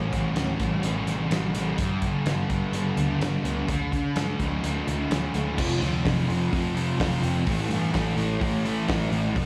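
A dreamy, hazy mix soaked in lush hall reverb carries this short shoegaze and dream pop rock fragment at 127 BPM in A mixolydian, where an up-front, double-tracked fuzz guitar riff with distortion and lush chorus moves from A7 through G and D before shifting to F5 at 5.6 seconds and then A5, over a dark, round, foam-muted vintage picked electric bass and a loose indie drum kit with a fat snare, tight kick, hi-hat, crash cymbal and rolled-off top that enters at 0.1 seconds.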